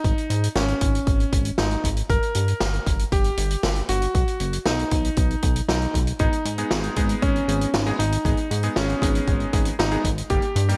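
A clangy electric grand piano carries the melody through tape echo from the very start, over a glossy, chorused synth bass and a punchy, layered electronic kick. A vintage kit adds hi-hat and a medium-tuned snare bathed in gated reverb, its top rolled off in a small, natural room. This driving, nostalgic synthwave fragment gains up-front electric grand piano stabs at 6.2 seconds.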